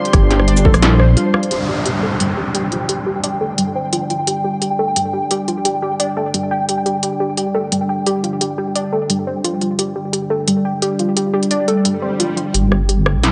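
A tense, heavy half-time drum and bass excerpt opens on a moody, detuned ambient pad with sidechain pumping and a warbling lo-fi pluck playing arpeggios, joined briefly by a deep wobble bass and a hard-clipped electronic kick while an industrial kit of clanging snare, crisp hats, rim clicks and shaker drives on; from 1.5 seconds a downlifter and a pulsing, tempo-synced gated texture arrive as filter sweeps move through the pad and pluck, and a swell at 12.0 seconds leads the wobble bass back in near the end, the whole mix sitting in a lush hall space.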